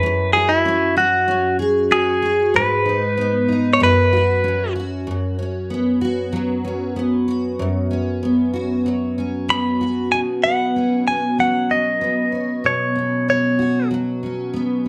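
A plate reverb gives this short pop passage, cut from a longer piece, a glossy studio shine and a sense of moderate space. At 95 BPM in a straight 4/4 in B major, the mood is sunny and heartfelt. A double-tracked, picked steel-string acoustic guitar with a full-bodied jumbo tone carries the accompaniment from start to finish, sitting up front. A bright, twangy clean electric guitar, recorded direct and compressed, plays the melody with a phaser coloring its tone, first from the opening to 4.7 seconds and again from 9.5 seconds. The harmony moves through F#sus2, G#m and F#sus4 before settling on Bsus2 at 10.1 seconds, giving the close an open, hopeful lift.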